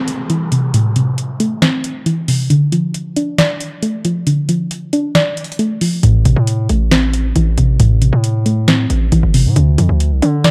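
A booming analog drum machine sets a half-time trap groove with a crisp snare and metallic hi-hats, while a soft, round pluck, rounded off by chorus and a low-pass filter, moves between A minor and D minor and an electronic downlifter falls away over the first 2.5 seconds. At 6.0 seconds a heavy, aggressive distorted 808-style bass comes in up front, giving this hard-hitting, dark hip hop fragment its weight. The mix is dark, with light reverb.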